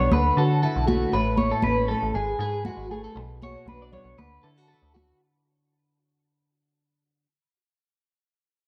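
Carefree and danceable, this short highlife guitar band excerpt moves at 118 BPM in a straight 4/4, cycling through Dadd9, Aadd9, Eadd9/G#, Bmadd9 and back to Dadd9 under a fade-out across its first 5.2 seconds. An up-front, slightly broken-up electric guitar plays arpeggios through phaser and tape echo, while a metallic FM bass with a fast, decaying attack and high-tuned congas struck by soft hands, close and dry, drive the groove. A fingerpicked steel-string acoustic guitar with fresh strings and audible finger squeak carries the accompaniment and rings on alone until 7.3 seconds, all set in a moderate echo chamber reverb with small room ambience.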